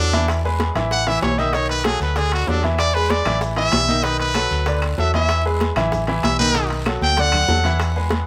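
A straight, danceable 4/4 salsa groove drives this sunny cut from a longer piece, where a brilliant, forceful trumpet solos up front with vibrato and scooped notes over a bright, woody upright piano and a dark, round, punchy hollow-body electric bass cycling through E, A5, B7 and D. High-tuned congas, tight bongos and ringing vintage timbales sit in the background, a raspy guiro and grainy maracas stay very quiet, dry claves join at 2.8 seconds, and a drum fill arrives at 7.0 seconds, all in light reverb.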